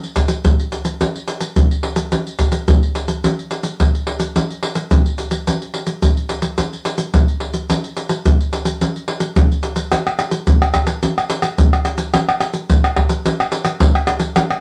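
A tight, up-front surdo anchors this short samba clip, playing together with egg shaker, pandeiro and tamborim, all sounding acoustic and close. At 108 BPM in a straight 4/4, the percussion carries a yearning, bittersweet mood, shifting into a new section at 9.9 seconds. A wet studio reverb with a short 0.5-second decay lends the ensemble some air, and the piece is cut from a longer work.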